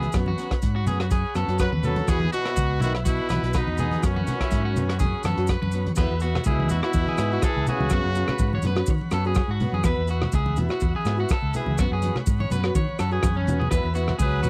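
A dry, close 1970s-style studio sound frames this carefree, joyful highlife guitar band excerpt, where a boxy picked acoustic archtop guitar and a twangy, slightly broken-up electric guitar playing arpeggios through tape echo ride over a round fingered bass, a gritty, saturated breakbeat kit with a punchy kick and a drum fill at 13.2 seconds, low-tuned background congas, grainy maracas and a buzzy combo organ with heavy vibrato, while a bright trumpet melody and a trombone second line with tape echo enter at 1.6 seconds and drop out at 8.6 seconds.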